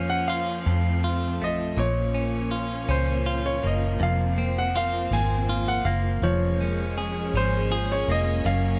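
In a slow, straight 6/8 at 54 BPM, this melancholic, aching pop ballad excerpt in Bb minor sets a clear, intimate grand piano melody with audible action noise over a twangy, compressed direct electric guitar and a round, foam-muted vintage bass up front, lush bowed strings sustaining chords in the background, and a full-bodied fingerpicked acoustic guitar with tape echo adding arpeggios from 4.0 s, all in a small room ambience.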